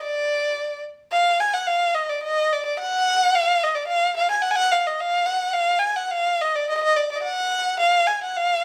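Fiery and restless, this short cut from a longer Balkan folk piece moves in a straight two-beat metre. A single bowed erhu carries the whole passage as a solo, from the opening moment through to 8.6 seconds. Its tone is rich and focused, with vibrato and portamento shaping the line as it moves between D5 and Ab5. The instrument sits close and up front, a lone player. A moderate studio reverb gives the performance a sense of a live room around it.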